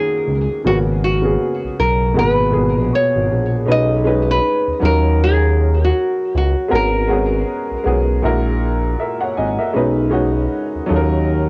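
A melancholic, hazy hip hop excerpt in G# minor moves at 79 BPM in 4/4 with a swung sixteenth-note feel, cut from a longer piece. A bright, fingerpicked nylon-string guitar carries the melody up front from the start until 7.5 seconds, its classical tone dulled by a low-pass filter, cassette tape coloring and tape echo. Beneath it, a woody, slightly detuned upright piano plays accompaniment across a broad range through 11.5 seconds, also filtered and tape-worn for a vintage character. A mellow, gliding synth bass enters at 0.3 seconds, blending sawtooth and square waves with a moving notch, portamento and sustained notes that sit prominently in the low end. The harmony drifts through lush extended chords such as D#m7, G#m11, B69 and F#9/A#, all set in light reverb with the intimate feel of a home cassette recording.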